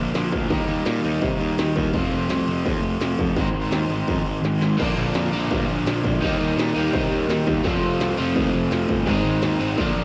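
Two bright, distorted electric guitars with a cassette-tape grit play riffs from the back of the mix over a growly, fuzz-laden picked bass as this rebellious, upbeat punk rock excerpt opens, and an electronic-sounding industrial drum kit joins a moment later with a distorted kick, clanging snare and crash cymbal. After a drum fill at 4.6 seconds, a double-tracked overdriven guitar enters up front at 4.8 seconds, its warm riff riding the cycling Bb, Eb, F and Ab chords through this home-recorded cassette cut with light reverb.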